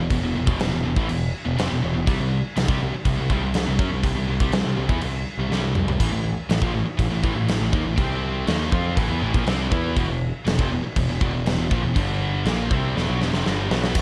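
Heavy metal at 121 BPM in E minor, dark and heavy, this short excerpt from a longer piece pairs two distorted guitars on the riff: one compressed and set back in the mix, the other scooped and high-gain, both bright and picked, moving through E5, C5, A5 and G5 power chords before landing on E minor. A growling, overdriven picked bass sits beneath them, while a big acoustic rock kit, up front with a punchy kick, fat snare and the sound of a stone room roughened by vintage 12-bit sampler grit, plays crash, splash and toms. Drum fills arrive at 5.5 and 13.0 seconds, all under a light reverb.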